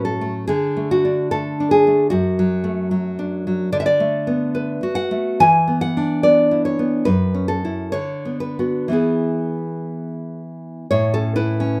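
A romantic piece for solo classical guitar, this short passage cut from a longer work has a nostalgic, sunny mood and moves at a rubato pace between 57 and 77 BPM in 2/4. The nylon-string guitar carries everything alone from 0.0 to 11.8 s, fingerpicked with a full-bodied, deep classical tone that sits up front and spans from F#2 up to G#5. Its harmony drifts from D5 through D/F#, Bm7/D and F#m7 before settling on an A chord at 10.9 s. A small, reverberant room wraps the instrument in a short, wet ambience. The sound is that of a rough, unpolished home demo.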